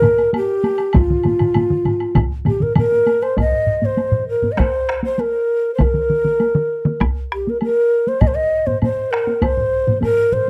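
A breathy, hollow shakuhachi carries the melody up front between F4 and Eb5, touched with tape echo, over a powerful, driving Japanese taiko ensemble at 99 BPM in a straight 4/4, with heavy- and hard-stick drums and a woody woodblock. One more layer of taiko joins at 0.9 seconds, and the close, dry solo taiko drops out at 7.5 seconds, after the music has moved into a new section at 3.4 seconds. The sound is a close 1970s-style studio recording with light reverb, and this passage is cut from a longer piece.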